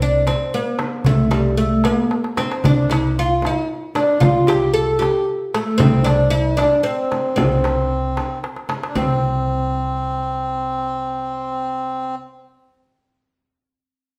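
A bright, woody oud leads this stately, festive Arabic maqam ensemble piece in 6/8, its plectrum-plucked, fretless double strings sitting up front as it carries the melody. Beneath it, an acoustic upright bass holds a low C2 with pizzicato steel strings and a warm tone. A crisp metal-shell darbuka, close and dry under soft hands, and a small frame drum keep time from the background, with a drum fill around 2.1 seconds. The reedy, breathy melodica, in its wooden case, enters at 2.6 seconds as a mellow, nasal second line. The percussion drops out at 9.2 seconds as the music moves into a new section, leaving oud, bass and melodica in a wet, large studio reverb that captures the band playing live together in one room, before this cut from a longer performance ends.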